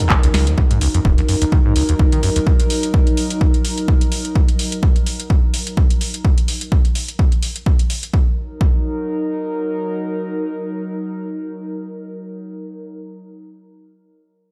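This raw, trippy acid house excerpt in Eb minor at 127 BPM opens with a squelchy, resonant sawtooth acid bass riff with tube saturation and a filter sweep, a booming analog drum machine of dry tonal snare, handclaps and metallic hats, and a warbling, nostalgic pad of detuned sustained chords with chorus, phaser and sidechain pumping, joined by a punchy, up-front electronic kick and a drum fill at 0.3 seconds. The bass riff stops at 2.4 seconds, leaving the 16th-note swing of the drums under the lo-fi pad, and once the drums fall away by 8.8 seconds the mellow pad carries on alone to the end.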